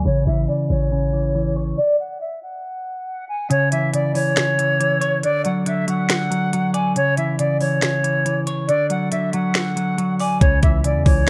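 A silver concert flute and a clean, picked semi-hollow electric guitar open this dark, brooding trap excerpt together, joined by a deep, boomy 808-style bass that drops out at 1.7 seconds, while a filter sweep runs across the opening and the music stops short before the drums arrive. At 3.5 seconds an up-front trap drum kit enters in a half-time feel at 139 BPM, with a sharp snare, crisp hi-hats and finger snaps roughened by vintage 12-bit sampler grit, though its knocking kick stays muted until 10.4 seconds, when the bass also returns. The flute carries the melody in C# phrygian with vibrato, a crisp attack and an expressive, pure metal tone that sits at a distance behind its delay. Underneath, the compressed hollow-body guitar lays out accompaniment with a subtle chorus as the harmony moves between C#m and D. A moderate plate reverb and a low-pass filter shape the bright 1980s-style digital production, and the passage is cut from a longer piece.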